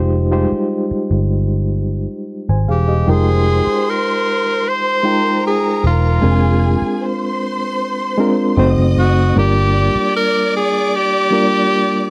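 Soul at 76 BPM in F dorian, cinematic and bittersweet, opening on a bright, reedy electric piano with fast tremolo over a dark, round, foam-muted picked electric bass that drops out at 10.0 seconds. A breathy tenor saxophone with light vibrato carries the melody from 2.7 seconds, and a lush bowed string section joins at 3.1 seconds as a second line while the harmony moves from Fm9 through Bb9/F and F#dim7 to Gm7. The sound is dry and close in a 1970s studio manner, with piano, bass and sax up front and the strings sitting further back.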